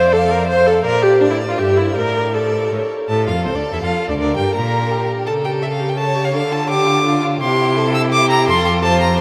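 A restless, stormy classical-period string quartet movement in triple time, cut from a longer piece, opens with all four bowed players sounding together from 0.0 seconds, its pulse pushed and pulled with rubato. A rich, smooth first violin carries the melody over a clear, distant second violin line and a focused viola accompaniment, each colored by vibrato, while a bright, intense cello sits up front on the bass. Huge, wet reverb places the quartet in a vast, echoing space, with a fresh statement of the opening idea arriving at 3.1 seconds.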